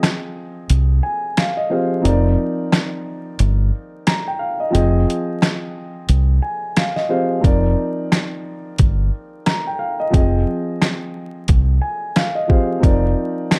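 The recording sounds dry and dusky, with vinyl crackle over a close, shadowy production. This gritty boom-bap hip-hop excerpt swings its sixteenths and moves between Fm7 and Cm7/F throughout. A sampler-style drum kit, compressed and pitched down, sits up front with a thumpy kick, a medium-tuned snare, rim clicks and hi-hat. A round, punchy fingered electric bass comes in at 0.7 seconds, deep and amped, carrying the low end. A mellow vintage grand piano plays accompaniment with audible action noise, filtered and tinted by cassette tape. The piano adds a short fill from 0.7 to 2.0 seconds during the opening break, which runs until 7.4 seconds.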